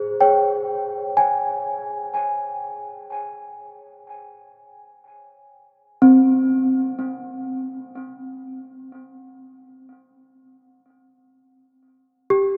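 A small celesta plays alone from 0.0 to 12.6 s in this serene, spacious ambient passage in free time, cut from a longer piece, its bell-like, delicate tone struck by hard felt hammers sitting up front between C4 and Ab5, coloured by tape echo and set in a wet cathedral reverb with a 6.0 s decay, opening on a Db5 chord before shifting into a new section at 7.5 s.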